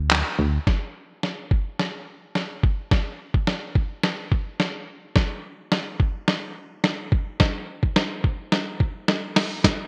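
A muffled, pitched-down sampler-style drum kit of handclaps, hi-hat, thumpy kick and medium-tuned snare sits up front with gated reverb, driving this bittersweet dance-pop fragment through a build-up, drum fill and filter sweep from 0.7 to 9.9 seconds. A punchy, round FM bass with sidechain pumping sounds only briefly at the very start, ending at 0.6 seconds. The bright 1980s-style digital production carries light reverb, and the piece is cut from a longer work.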